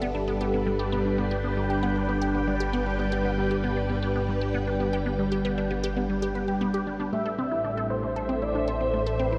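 A dreamy, reverb-soaked mix opens this expansive, hypnotic stretch of ambient, sequencer-driven space music, where a swirling, up-front string machine sustains chords through chorus and phaser, a squelchy, resonant blip pluck repeats its riff through phaser and tape echo, a fat, detuned analog bass holds the low end, and a breathy, flute-like synth lead with vibrato enters at 7.1 seconds as the harmony moves from G to A minor.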